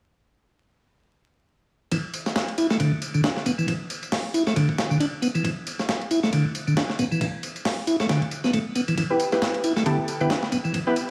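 A piping tonewheel organ riff with key click, its rotary speaker stopped, low-pass filtered and fed through tape echo, leads this raw, energetic breakbeat excerpt in E minor at 136 BPM, riding a gritty, compressed sampler-style kit with a thumpy kick and a background tambourine, until a bold, detuned orchestra-hit-like synth stab bursts in at 9.1 seconds, all set in a lush hall reverb with vinyl crackle.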